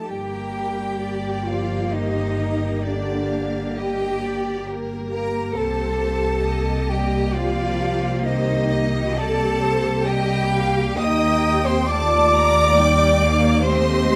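Cinematic and longing, this excerpt moves at a rubato 67 BPM in 3/4 in G minor, with a focused, close violin section carrying the melody over smooth violas, intense cellos and a lush, up-front double bass section, while a clear second violin section and an airy, tongued flute each play a second line higher up. A distant, roomy French horn section holds sustained chords in the background as the harmony shifts from Gm to Cm7 at 5.6 seconds and to Ebmaj7 at 11.0 seconds. Vibrato colours the strings and flute, and a moderate scoring stage reverb gives the ensemble a spacious, moving sound.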